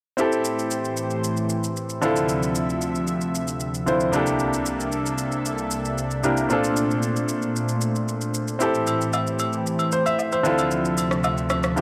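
Hypnotic, deep amapiano in D minor at 114 BPM, where a brilliant, up-front baby grand piano with short sustain accompanies over a thick, detuned unison pad with chorus, moving through Am7, Dm9, C13 and Bbmaj9, while a layered electronic shaker and rim click keep time and acoustic agogo bells and woodblock join at 8.9 seconds, all set in a dark production with moderate scoring-stage reverb.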